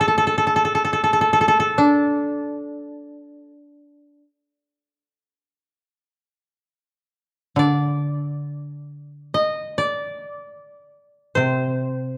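A lone koto, plucked with fingerpicks, opens this austere, calm fragment of Japanese chamber music, its woody, dry melody sitting up front in free time, tuned slightly below standard pitch. The opening phrase returns at 6.4 s, and at 7.6 s a second, mellow koto enters beneath it with a low accompaniment. A moderate recital hall reverb surrounds the pair, and the production has a dark, warm cast.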